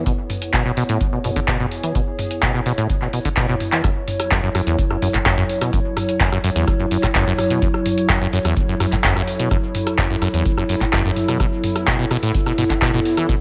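A straight 4/4 groove at 127 BPM drives this hypnotic, trippy acid house cut in F# minor, taken from a longer piece, with a deep electronic kick and a booming, up-front analog drum machine of metallic hats, handclaps, rim clicks and toms, both carrying a tape-warm tint. A squelchy, resonant sawtooth acid bass plucks its riff between E2 and E3 with sidechain pumping and digital delay, while a warbling, lo-fi, nostalgic pad, dark, wave-folded and ring-modulated with chorus, reverb and its own pump, sustains from F#3 to C#5. After a drum fill at 3.4 seconds, the drop lands at 3.8 seconds, moving from B7(no3) to F#m7 and back to B7(no3) at 11.4 seconds, all set in a moderate digital room.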